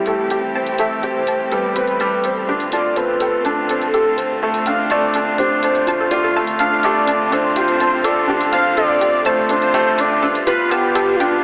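A straight 4/4 pulse at 124 BPM is marked by an electronic hi-hat, layered and re-recorded in a small room, sitting low in the mix of this intimate, hypnotic piano and strings electronica. A felt-muted upright piano sits up front with a soft, mellow riff, its thin felt and audible action noise caught through a digital delay. Above it, a velvety synth lead carries the melody between F4 and F5, its smooth sawtooth, triangle and sine blend with a sub octave given chorus and vibrato. A woody string quartet holds bowed chamber chords, one player per line, behind a low-pass filter, while a nasal, detuned analog pluck spins bright arpeggios in the background through chorus, phaser and delay. The whole passage is a build-up moving from Am7 to Dm7 at 2.5 seconds and on to G7 at 10.2 seconds, set in a moderate amount of huge ambient reverb and thinned into an AM radio sound, and it is cut from a longer piece.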